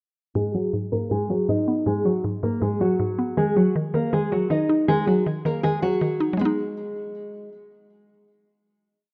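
A rough home demo with light reverb and small-room ambience carries this short, melancholic and brooding hip hop piece in G# minor at 159 BPM with a half-time feel, moving from G#m7 to D#m and back. Up front, a bright, full-bodied nylon-string guitar fingerpicks a looping melody doubled in octaves, finger squeak audible, through a low-pass filter and digital delay. A woody, round FM mallet-like synth pluck with chorus and a noise layer repeats a patterned eighth-note arpeggio like a sampled loop. A filter sweep runs through the breakdown until 6.4 seconds, after which a final chord holds until the synth stops at 9.1 seconds.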